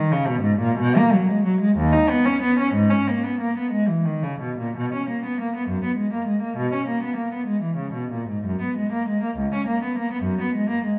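In a 6/8 with a free, rubato feel, this radiant, dance-like baroque-style suite movement for a single bowed cello sings in a dark, woody voice with vibrato, set in a wet recital-hall reverb across a short passage cut from a longer piece.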